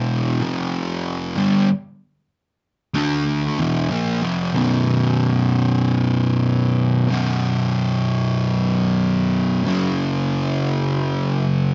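A fuzz-drenched electric guitar carries this short metal excerpt entirely on its own, picked and double-tracked, sitting up front with a warm, distorted grain. The mood is heavy and ominous, moving at 94 BPM in a straight 4/4 feel in B minor. The guitar ranges from a low B1 up to D4, working through power chords on F, G, D and E in the opening 4.5 seconds before settling onto B and later shifting to F# at 9.7 seconds. The sound has the moderate reverb of a small room, like a band playing live together, and its top end is dark and rolled off. It is cut from a longer piece, ending at 11.7 seconds.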